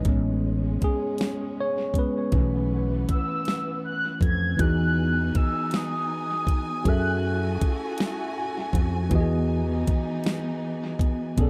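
Slow, sensual six-eight R&B in E major at 53 BPM, where a worn, slightly out-of-tune tine electric piano with dub echo opens with a solo passage and later adds a fill at 8.0 seconds, over lush bowed strings, a round, punchy fretless bass with ensemble chorus, and an up-front electronic drum kit with a knocking kick and fat snare, while a warbling, vintage horn-like synth lead carries the melody from 3.1 to 7.7 seconds through chords moving from B9sus4 to Emaj7 and F#m9 in a dry, echo-heavy mix.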